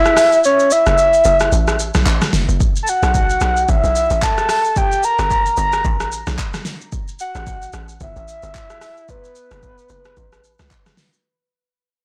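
Soulful and late-night, this amapiano excerpt moves at 111 BPM in 4/4 with a 58% swing on the sixteenths, cut from a longer piece. A soft, octave-layered synth lead carries the melody between B4 and Bb5, its round triangle and sine tones doubled by a sub octave, treated with chorus, phaser and delay plus a touch of vibrato, sitting dark and up front. A deep house drum kit enters at 0.1 s with handclaps, hi-hat, kick drum, rim click, shaker and snare drum, its deep kick and fat snare carrying a tape-warm, small-room character. A tight log drum bass joins at 0.9 s, punchy and percussive with a fast attack, a decaying tail and a noise layer, moving between F#1 and C#2. The harmony runs through F#m7, B7sus4, Gmadd9, A5 and F#madd11, with a break from 0.4 to 2.6 s. Moderate digital room reverb surrounds a blown-out, overdriven recording.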